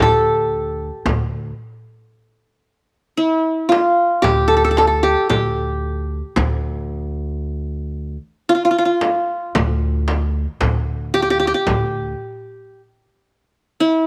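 The qanun leads this hypnotic, soulful Turkish makam ensemble passage, its bright-edged triple strings, played with fingerpicks, carrying the melody up front between E4 lowered by 30 cents and A4. The piece sits in D makam ussak, tuned to A4 = 439 Hz, and moves in a straight 10/8 at 113 BPM counted in eighths. Beneath it, an up-front pizzicato upright bass with steel strings gives a woody, growly anchor on D2 until about 12.1 seconds. A clay-shell darbuka with natural skin, played with soft hands, sits in the background through nearly the whole span, while a frame drum struck with hard hands joins at 1.1 seconds. Light reverb and small-room ambience give the acoustic group an intimate, warm space in this excerpt from a longer piece, which closes with the qanun ringing on to 14.1 seconds.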